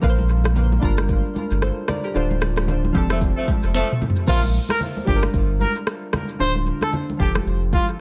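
Glassy, chorused and phased digital keys open this breezy, romantic afrobeats clip at 113 BPM in Bb major alongside a round, up-front sub bass and a tape-warm electronic afro-pop kit with a deep kick and sharp snare over swung sixteenths, while ringing hand-struck congas and dub echo on the drums and keys fill the dry, echo-heavy mix, a distant, mellow horn section in octaves briefly adds a second line at 3.1 seconds during a band accent and drum fill, and a clear trumpet with light vibrato takes the melody from 4.3 seconds.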